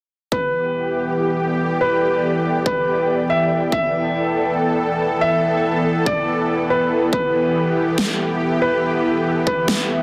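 A dense, heavily limited modern mix in a moderate digital room opens this chaotic, menacing heavy wobble dubstep excerpt at 141 BPM in a half-time 4/4 feel on E minor, where a polished baby grand piano carries the melody through tape echo from 0.3 seconds over a lush, detuned supersaw pad with 12-bit sampler grit and sidechain pumping, a punchy electronic kick re-recorded in a small room, an ethereal, airy pad with ensemble chorus entering at 1.5 seconds, and a huge electronic snare arriving up front at 8.0 seconds.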